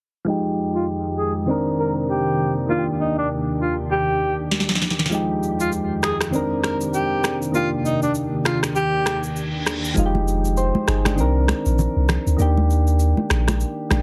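A heavily compressed, radio-like sound with light reverb frames this mellow, hypnotic afrobeats excerpt at 99 BPM in 4/4, with a swung sixteenth-note feel. Soft, round electric-piano-like synth keys with chorus open at 0.2 seconds, joined by a glassy, ethereal FM pad holding slow-attack chords and a breathy, whispered alto saxophone carrying an intimate, vibrato-tinged melody through tape echo. A filter sweep runs through the first section as the harmony cycles through Fm9, Cm9 and Ebmaj7. At 4.5 seconds the drums arrive with a fill, bringing a sharp electronic snare, shaker, rim click and finger snaps that sit up front with a small-room character. An electronic reverse cymbal leads into the second section at 10.0 seconds, where a deep, punchy sub bass with a pitch-drop attack takes over the low end, the kick is muted, and damped, high-tuned congas played with soft hands add texture from the background.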